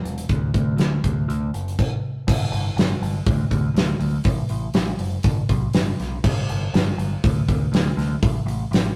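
Sunny and swaggering, this short classic rock clip at 121 BPM in a straight 4/4 pairs a growling, bright picked electric bass with overdrive against an up-front acoustic rock drum kit of punchy kick, fat snare, hi-hat and crash cymbal, all captured as a rough rehearsal-room recording with tube saturation and light reverb, shifting into a new section at 2.3 seconds.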